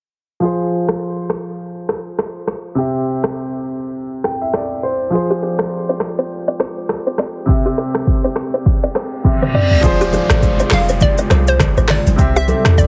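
An overdriven deep house drum kit sits up front in this joyful, romantic afrobeats excerpt, its deep kick layered with finger snaps, handclaps, hi-hat, rim click, shaker and toms at 102 BPM in 4/4 with a 16th-note swing. A clear, polished concert grand piano opens at 0.4 s with short-sustained chords moving between F minor and C, playing a fill just past 4 seconds while a filter sweep runs across the opening section. A woody, mellow kalimba joins at 5.3 s with a ringing, delayed riff, and a drum fill and reverse cymbal lead into the second section. From 9.8 s a boomy, dark 808-style bass and a soft, flute-like pad with chorus fill out the low end and background, joined by thick-skinned congas and an electronic downlifter. A bright, bouncy, hollow square-wave pluck adds a short melody with chorus and delay near the end, all framed by light reverb and a heavily compressed, low-passed radio sound.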